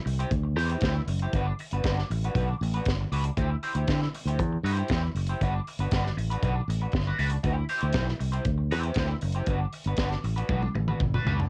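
A punchy fingered electric bass sits up front in this short disco passage, ranging from F#1 to D3 and driving a glamorous, celebratory groove at 118 BPM in a straight 4/4, in G major. Beside it, a picked electric guitar at the edge of break-up plays accompaniment between D4 and C5, its slightly broken-up tone colored by wah and a cassette-tape grit. A modern studio drum kit, also run through cassette tape, supplies hi-hat, kick, snare and toms, with a high-tuned snare, a thumping kick and a rolled-off, mid-forward character. All three parts enter at 0.1 seconds, and the harmony alternates between D9sus4 and Gmaj7. A drum fill from 10.5 seconds closes the passage, which carries little reverb and the close, homespun feel of a cassette home recording.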